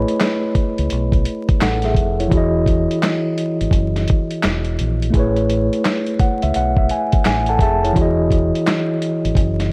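Dreamy and cosy, this lo-fi hip hop excerpt sways on a swung groove as a mellow, up-front tine electric piano, softened by a low-pass filter, lays down lush Amaj9 and Emaj9 chords and adds a fill at 5.8 seconds, over a dark, round fingered electric bass and a gritty, compressed sampler-style kit of thumpy kick, medium-tuned snare, hi-hat and handclaps, with barely audible dry finger snaps at 8.7 seconds and vinyl crackle under light reverb.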